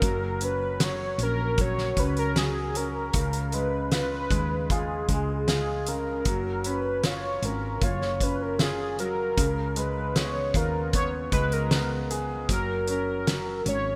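Tender and hopeful, this pop ballad excerpt moves at a steady 77 BPM in 4/4 in F# major, with a velvety, detuned synth lead carrying the melody up front over a clear, natural grand piano with subtle chorus. A woody, growly fretless electric bass holds the low end while a loose, roomy indie drum kit with a fat snare and tight kick plays until 13.8 seconds. Light reverb and a bright 1980s-style digital sheen frame the passage as it cycles between F# and C#7.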